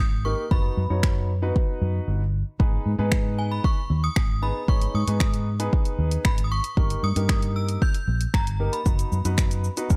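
A chiming, inharmonic synth melody with ensemble chorus opens this summery, upbeat dance-pop excerpt in B major at 115 BPM, alongside a round, punchy, foam-muted electric bass that pumps to the sidechain, while an intimate grand piano with audible action noise joins at 0.2 seconds. A deep house kit of finger snaps, hi-hat, shaker and an overdriven deep kick arrives at 0.5 seconds and sits up front, and a short break falls between 2.1 and 2.6 seconds before the harmony moves to G#m. The whole is a dry, gritty hardware recording with transformer saturation and a digital ambience.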